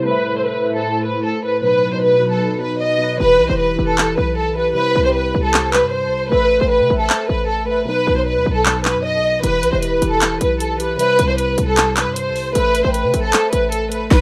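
A half-time trap groove in 4/4 carries this brooding, melancholic hip hop fragment, cut from a longer piece with a rough home-demo feel and light reverb, where a lush bowed violin section sings the melody up front with vibrato and portamento through analog delay, a clean tine electric piano with phaser accompanies throughout, an airy, breathy pad holds sustained chords until 3.2 seconds, a punchy, tight 808-style bass enters at that point, and an overdriven trap kit of hard-clipped kick, sharp snare and handclaps joins at 4.0 seconds, with bright hi-hats coming in at 9.4 seconds.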